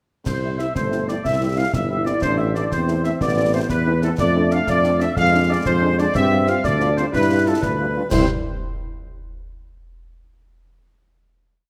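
A military-style march for wind band in 6/8, this short, complete piece moves at 122 BPM in C major with a festive, spirited air. A dark, distant trumpet section carries the melody from 0.3 seconds, while a mellow woodwind section with light vibrato doubles the tune in unison in the background. Up front, a warm, soft-attacked tuba plays bass on the beats and sustained bass notes, and a French horn section with a smooth top adds after-beat chords and held harmonies. A tight, roomy trombone section enters at 0.7 seconds with a counter-melody and sustained chords. Close and dry concert snare, bass drum and bright clash cymbals set a marching snare over a bass drum on the beat, and the harmony passes through C, Am, Dm7/F and G7 before the final C chord arrives at 8.1 seconds in a moderate concert hall reverb.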